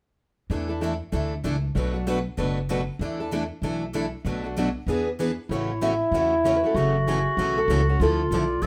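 A charming, playful burst of acoustic string swing at 192 BPM opens at 0.5 s with two picked steel-string guitars in accompaniment, one plugged-in, bright and up front with finger squeak on fresh strings, the other dark with a concert body, over a woody, thumpy pizzicato upright bass on gut strings, moving through E7sus4 and Bm7. At 5.5 s the harmony shifts to A6 and F#m7 as a bright, boxy parlour guitar takes the melody, joined by a mellow, up-front clarinet second line with light vibrato, subtone and scooped notes in a vintage jazz style. Light reverb gives the cut a touch of space before it settles on Dmadd9.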